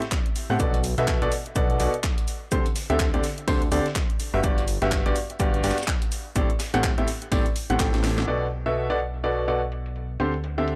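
A dry, gritty piano house excerpt at 125 BPM with a swung, energetic and soulful feel, where a clear, woody upright piano with audible action noise and tape echo plays an up-front riff over Am7, Bm7, D7sus4 and Gmaj7, a fat, detuned sawtooth bass pumps beneath it, a punchy analog kick drives until 7.9 s, and a garage kit with cracking snare and handclaps layers with a compressed sampler-style breakbeat kit in the background, leading into a drum fill and then a filter sweep on the drums from 8.3 s.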